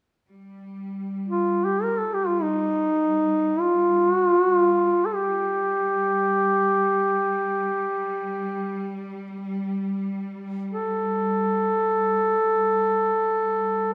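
Caucasian folk lament in free time, longing and solemn, where a rich, lush bowed cello section holds a quiet drone on G3 with intense vibrato from 0.3 seconds, and a mellow duduk enters up front at 1.3 seconds to sing a solo folk-style melody between Eb4 and Bb4 with scooped notes, all set in a moderate scoring-stage reverb in this short cut from a longer piece.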